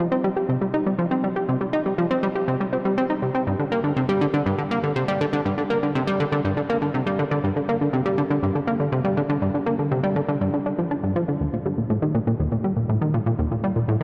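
Hypnotic and expansive, this ambient excerpt, cut from a longer piece in G minor, moves at 121 BPM in a straight 4/4. A plucky analog bass carries it alone from 0.0 to 14.0 s, ranging from Eb2 up to G4. Its tone is punchy and funky, blending sawtooth, square and sine waves with a wave-folded edge, and each note has a fast attack and a decaying filter pluck. Delay trails the bass, which sits up front in the mix even as a wet cathedral reverb with a 5.2-second tail places it in a vast, echoing space. A new section begins at 11.4 s and carries through to the end.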